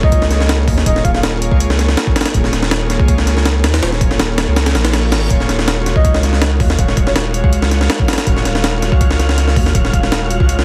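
A heavily compressed radio-style sound with light digital ambience frames this nostalgic, dark drum and bass excerpt in Eb minor at 162 BPM, where an up-front, gritty sampler-style breakbeat kit with thumpy kick and high-tuned snare drives over a deep, round dub sub bass and an airy detuned pad, while a breathy flute-like lead with chorus, vibrato and dub echo sings briefly in the background at 0.0 and 6.0 seconds, a very quiet reverse cymbal at 5.0 seconds leads into the move from Db6/Eb to Ebm11 at 5.3 seconds, and a dark, wind-like tuned noise texture with its own reverb drifts in at 6.3 seconds.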